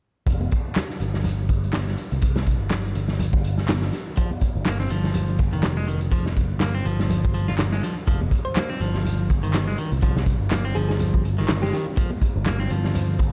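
An energetic, funky breakbeat groove with a swung sixteenth-note feel, this short cut from a longer piece opens at 0.3 seconds with a raw garage drum kit and a picked electric bass together. The drums sit up front, gritty and saturated, with a punchy kick, a medium-tuned snare and hi-hat, all with a rolled-off top, while the bass sounds direct and amped in its low register. Very quiet congas with a thick skin and hard hands add close, dry percussion, and layered electronic handclaps with overdrive arrive at 0.8 seconds. A clean, twangy electric guitar enters at 4.2 seconds with a compressed, picked riff carrying delay. Later, a round, tine-like synth pluck resembling a thumb piano sings a gentle melody in the background with chorus, delay and a small-speaker tone, and near the close a deep, moody ambient pad with a slow attack swells in beneath on sustained chords. A small room reverb gives the whole production a dark, warm character.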